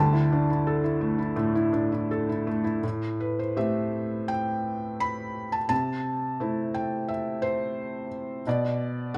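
Classical solo piano in a lyrical vein, this brief cut from a longer piece sets a brooding, bittersweet mood at around 80-89 BPM in 4/4, moving with a rubato feel in A minor. A felt-muted upright piano carries everything alone from 0.0 to 9.2 seconds, ranging from D2 up to B5. Its tone is soft and mellow, with a thin layer of felt dulling the hammers, and the instrument sits up front and intimate, close enough that the action noise of the keys and mechanism is plainly audible. The harmony opens on Dsus2, shifts to Am7 at 2.8 seconds as a new section begins, then passes through C6 before settling on Bm near the close. A moderate recital hall reverb lends the hushed playing a gentle sense of space around it.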